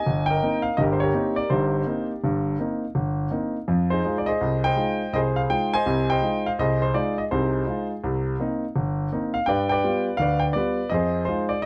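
Close, detailed miking with light reverb frames a clear, present grand piano playing solo jazz in C minor, a cool, smoky 11.7-second excerpt at 166 BPM in 4/4 with a swung eighth-note feel, its long-sustaining notes ranging from G1 to Ab5 over Cm7, Fm7 and G7 harmony.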